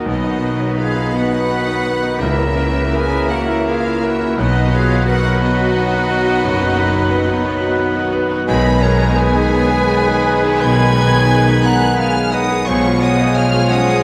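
Romantic classical music for piano and orchestra, passionate and lush, moves at a slow 57 BPM in 12/8 with rubato and uneven beats, its harmony centred on B with passing diminished, G#m/B and C#7/B colours. A clear, up-front concert grand piano with deep bass and long sustain carries the melody, while a distant violin section also plays melody higher up. Around it, oboe, airy flute, mellow clarinet and close warm violins weave second lines over rich violas, a dark bassoon, very quiet French horn chords and bright trumpet stabs. Cellos and double basses hold the bass in the background, hard-mallet timpani sounds from 2.2 to 3.3 seconds, and a wet concert hall reverb surrounds it all in this passage cut from a longer piece.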